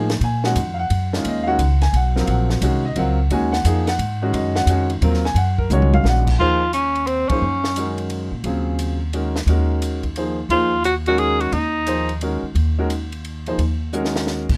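Dry and closely recorded, with little reverb and fine detail, this short cut from a longer modal jazz piece swings in 3/4 at 175 BPM, hovering on an Ebm9 chord in Eb dorian with a hypnotic, searching mood. A clear, smooth grand piano with long sustain carries the accompaniment up front, while a woody, thumpy pizzicato upright bass on steel strings anchors the low end. A compact cocktail kit with dark cymbals, a high-tuned snare and a punchy kick moves across ride, hi-hat, crash and toms, and it plays a short fill near 6.0 seconds. At 6.4 seconds a warm, vintage-sounding tenor saxophone steps forward as the soloist, phrasing between C4 and Ab4 with light vibrato and scooped notes. The band hits an accent at 7.2 seconds, and the saxophone returns for a second brief phrase before the drums close the passage with another fill.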